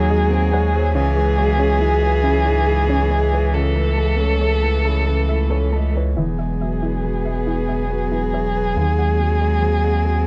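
A dry, close recording with a 1970s studio character and light reverb frames this hopeful, intimate neoclassical piece for piano and strings, a rubato 69 BPM in 3/4 and E major, cut from a longer work. Up front, a dark, woody solo violin with vibrato carries the melody through a slapback echo, while a pure, floating cello plays a soft-attack second line sul tasto, and a bowed viola and an open, long-sustaining upright piano accompany in the background. A deep, thick, saturated sub bass sits prominently beneath, and from 0.1 s a round, gentle pluck with chorus and slapback echo adds arpeggios as the harmony moves from C#m to an Eadd9 at 6.2 s.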